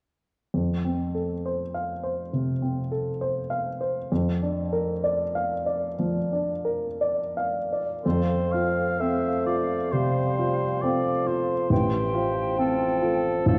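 Heard through the warble and pitch drift of worn old cassette tape and a wet scoring-stage reverb, this lush, lyrical romantic excerpt for piano and orchestra in F major moves with rubato at 54-69 BPM: a present, up-front baby grand piano with short sustain carries the melody alone from 0.5 s until, at 8.0 s, a dark bassoon enters in accompaniment and a warm solo oboe adds a second line, joined by a distant, roomy clarinet and, from 8.1 s, a pure, crisp-attacked small flute group with vibrato, both sitting in the background.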